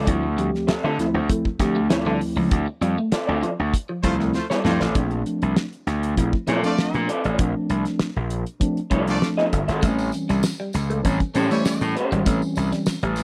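A straight 4/4 funk groove at 98 BPM sets a hypnotic, funky mood in this short excerpt cut from a longer piece, with the harmony moving from Dm7 to Bbmaj9 at 5.0 seconds and on to A7#9. A damped 70s drum kit sits up front with a fat snare, tight kick and hi-hat, while a gritty slap bass, bright, punchy and overdriven, drives the low end alongside it. Two electric guitars run through a small old amp, both slightly broken-up and picked: one plays accompaniment up front with tremolo, and the other carries a compressed riff in the background with phaser, dropping out and returning at 9.8 seconds. A mellow tine electric piano adds clean, direct stabs throughout, and a clear horn section with light vibrato plays a second line from 4.0 seconds. A band accent and a drum fill lead into the second section, and a jingly tambourine joins at a distance late on, all within a dry, close 1970s-style studio sound touched by studio reverb.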